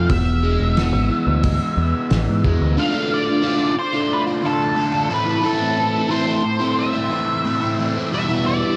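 A hypnotic, mysterious psychedelic rock excerpt opens with a dark, fuzzy octave-fuzz lead guitar melody over a bright, double-tracked crunchy guitar riff colored by phaser, alongside a round, punchy dub bass and a muffled, cloth-damped drum kit with a fat snare and tight kick. The drums fall away at 2.6 s and the bass at 2.8 s, leaving the two guitars to carry the passage through Dm, Am and Em7, with analog delay on the lead. The mix is soaked in a huge ambient reverb that lends it a dreamy haze.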